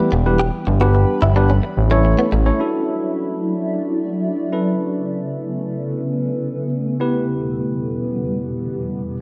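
A fat, saturated analog bass with a fast, plucky attack stands up front in this euphoric, upbeat pop passage, cut from a longer piece, anchoring the opening drop before it stops at 2.5 seconds. Above it, a direct-recorded clean electric guitar plays a bright, compressed riff coloured by lush chorus, also dropping out around 2.4 seconds. A tine electric piano carries the accompaniment throughout with a clean, up-front tone, while a shimmering ambient pad holds sustained chords, its ethereal octave-up shimmer and evolving granular texture treated with chorus, phaser and its own reverb. After the opening moves through G and A, the harmony opens at 2.6 seconds onto Dadd9, then Aadd9 and Em, with just the piano and pad carrying the second section. A moderate, lush hall reverb and a dark, warm production give the whole an enveloping glow.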